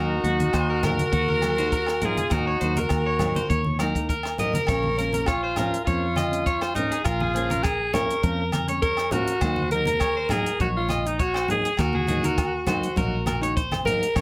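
A raspy alto saxophone carries the melody from the first moment, gritty and punchy yet set back in a roomy space, with a present, vibrato-laden trumpet adding a jazz-style second line that stops at 3.7 seconds. This is a highlife guitar band excerpt at 101 BPM in 4/4, with a light swing on the sixteenths and a warm, bittersweet mood, moving from E-flat minor to B-flat minor at 4.7 seconds and back at 9.4 seconds. A fingerpicked nylon-string guitar supplies classical-flavored accompaniment with audible finger squeak, while a twangy electric guitar at the edge of break-up picks arpeggios through a slapback echo. Underneath, a fingered electric bass sounds dark and round, foam-muted and direct. A compact cocktail drum kit enters at 0.2 seconds, dry and natural with a punchy kick, hi-hat and rim click, joined by low-tuned, thick-skinned congas heard distant in a large room and ringing agogo bells sitting in the background, all wrapped in light reverb.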